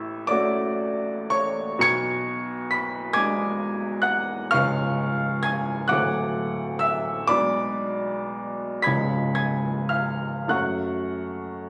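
A solo upright piano carries this melancholic, mournful fragment, its woody, natural tone sitting up front and spanning C#1 to C#7. The music is a romantic classical nocturne in F# minor and 6/8, moving slowly at roughly 33-46 BPM in dotted quarters with a freely bending rubato feel, and the instrument is tuned to A4 = 438 Hz. Across its 11.7 seconds it forms a single section, drifting from F#m/A through G#dim/B and C#7 to a D chord at 5.9 seconds, then back through G#dim/B and C#7 before settling on F#m at 10.5 seconds. A moderate hall reverb surrounds the piano, and the performance was captured on a phone in the room. Cut from a longer piece, it feels like a brief, sorrowful glimpse of a larger nocturne.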